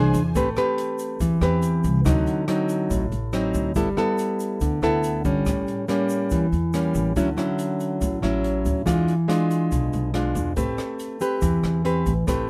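Bossa nova in A minor at 141 BPM, smooth and melancholic, this short passage cut from a longer piece is tuned to A4 = 445 Hz and moves through Am9, D7b9, G69, A7b9, Dmaj9 and E7b9 before returning to Am9 at 10.6 seconds. A warm, fingerpicked classical nylon-string guitar sits up front, carrying the accompaniment over a woody pizzicato upright bass with steel strings. Behind them, an open jazz drum kit in a studio room plays hi-hat, rim click and a boomy kick, while a grainy, bright egg shaker stays close, dry and in the background, all under a light reverb.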